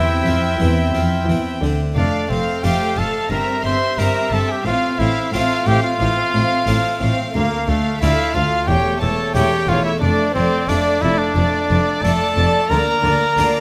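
A clear solo trumpet carries the melody up front in this festive, brilliant baroque-style concerto movement, its tone smooth at the top and shaped in a classical manner. Two chamber violin sections surround it, one carrying the melody higher up with light vibrato and a soft, intimate sul tasto touch, the other holding a close second line. Beneath them, a dark, lush viola section adds expressive accompaniment with vibrato and portamento from a more distant position, while a harpsichord with octave strings supplies plucked, French-style chording. The bass is rich and even, shared by a cello section sitting in the background and a double bass section reaching deep, both bowed smoothly with vibrato; the two bass lines stop at 13.5 seconds, just before the upper parts finish at 13.6. Close, detailed microphones capture the ensemble within a moderate recital hall reverb, as the harmony moves from C to F, then through C7/G and F/A into D minor, closing on Bb/D in this short cut from a longer piece.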